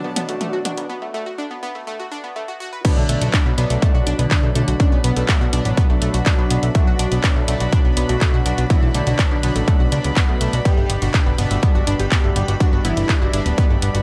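A straight 4/4 pulse drives this dark, hypnotic melodic techno excerpt, where a punchy, tape-warm analog drum machine with crash, handclaps, hi-hat and toms opens with a short fill before a break, and at 2.8 seconds the drop lands with an overdriven, distorted electronic kick up front and a soft, airy dreamy lead, all over sidechain-pumped layers of bright, wave-folded analog pluck arpeggios with dub echo, brassy, nasal synth brass stabs, a fat, saturated analog bass, a thick unison lead melody with tape echo, and reedy, gut-toned chamber strings holding Bm chords in the background before the harmony shifts to G at 10.7 seconds.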